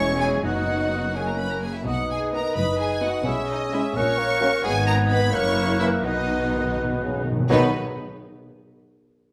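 A 6/8 metre at 85 BPM with uneven beats drives this quick, cheerful classical-period orchestral passage in B major, cut from a longer piece, where a clear, focused violin section carries the melody while a rich, expressive second violin section, a mellow distant clarinet and an airy, hollow flute trace second lines above a smooth, lush viola section and a solo bassoon. Beneath them a roomy French horn section holds tight sustained chords, and a bowed double bass section and an even-toned cello section anchor the bass. Soft-mallet timpani with a round calf-head tone strike briefly near 0.4 seconds and return for a fill from 6.0 seconds, all set in the spirited glow of a reverberant scoring stage.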